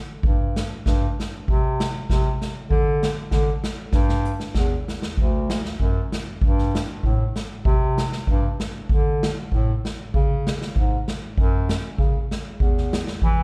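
Heard from further back in a concert hall with a moderate reverb, this short cut from a longer alpine folk dance piece has a roomy, airy sound and a bouncy, jolly mood in 2/4 with a light swing. A warm, distant bass clarinet carries the bass line in a classical style, while a street-band drum kit with a boomy kick, medium-tuned snare and hi-hat sits up front with a polished, acoustic big-room character. A drum fill from 3.9 to 5.2 seconds leads into the second section.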